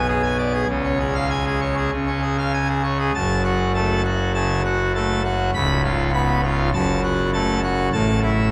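A solo pipe organ on full organ, its mixtures bright and brilliant with audible chiff and baroque voicing placed up front, opens this jubilant, majestic classical toccata fragment at 100 BPM in straight 4/4 in F# minor (tuned to A4 = 437 Hz), moving from G#dim/B and C# into a new section at 3.1 s that cycles F#m and C#7 before settling on A5, all ringing out in a cathedral reverb with a 5.7-second decay.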